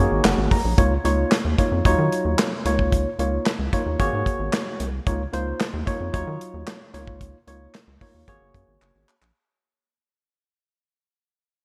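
A straight 4/4 groove at 112 BPM drives this danceable, smooth slice of early-eighties boogie funk in Db major, cut from a longer piece. A worn, slightly out-of-tune tine electric piano opens with a short fill before settling into accompaniment, its clean tone heard up front as if through built-in speakers, moving through lush chords such as Ab9sus4, Db69 and Ebm9. Underneath, a rubbery square-wave bass with a hollow, resonant filter pluck and a saturated, bouncy low end holds the bottom from the first moment. The drum kit enters at 0.2 seconds with handclaps, hi-hat, a tight kick and a medium-tuned snare, its dark, rolled-off top wrapped in gated reverb, and a drum fill arrives at 8.8 seconds. Light reverb and studio ambience sit around a bright 1980s-style digital production, and the track fades out from 0.8 seconds to the end.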